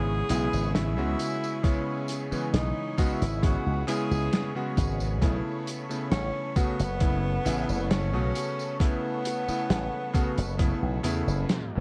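A dark, warm production with a cassette-tape haze and light small-room reverb frames this woozy, melancholic vaporwave fragment, cut from a longer piece. A breathy tenor saxophone carries the jazz-style melody with vibrato and scooped notes, its line trailing through tape echo, while a bright electric grand piano with a clangy bass register, vintage and up front, plays accompaniment through analog chorus. A lush, detuned unison pad of sawtooth and square waves sits in the background with slow attack and long release, and a punchy slap bass with an envelope filter holds the low end. A dry, muffled soul drum kit of hi-hat, medium-tuned snare and tambourine enters at 0.3 seconds, joined at 1.6 seconds by a thumpy, overdriven electronic kick. The harmony moves from C#m7 to B9sus4, and the recording ends in a tape stop at 11.5 seconds.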